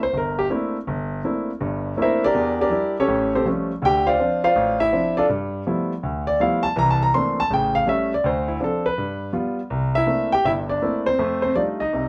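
A lively swing on the eighth notes drives this playful solo jazz passage, cut from a longer piece and played on a baby grand piano that sits up front with a natural, short-sustained tone. The piano ranges from deep bass notes up into its high register, moving through rich thirteenth chords and an altered dominant, and its solo runs from the start to 9.7 s before a new section carries on to 12.1 s. A moderate studio reverb lends the live room a gentle sense of space.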